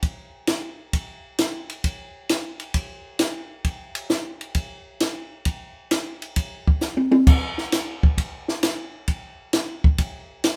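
A light reverb frames this short, bluesy and greasy jazz passage at 133 BPM in 4/4, swung on the eighths. A compact cocktail drum kit carries it, acoustic and up front, with dark cymbals, a high-tuned snare, a punchy kick, hi-hat, ride, crash and toms, all sounding dry and natural. A brief drum fill stands out at 6.8 seconds.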